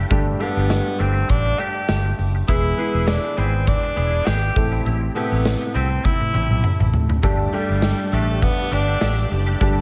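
A lightly swung 16th-note groove at 101 BPM in 4/4 drives this glossy, uplifting 1980s-style pop passage in G major, with a big rock drum kit's punchy kick and medium-tuned snare rolling through a fill from 6.0 to 7.2 seconds while a round, up-front fretless bass with analog chorus anchors the low end. A polished grand piano with subtle chorus and a clean, hollow-body electric guitar riff, tucked in the background under ensemble chorus and ambient delay, support an edgy tenor saxophone lead full of vibrato and scooped notes. At 7.2 seconds a lush vintage string machine enters with sustained sawtooth chords, and plate reverb soaks the mix in a dreamy haze.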